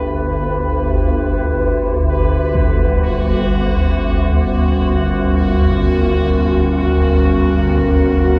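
In free time, this unsettling, cavernous dark ambient drone excerpt sets an up-front, swarming, detuned low drone with built-in reverb beneath a deep, moody analog pad on sustained chorused chords and a bubbling, resonant stepped-filter texture, while a huge, very quiet impact strikes at 2.5 seconds as the harmony shifts from G to F#/G, all held in a vast, echoing cathedral space.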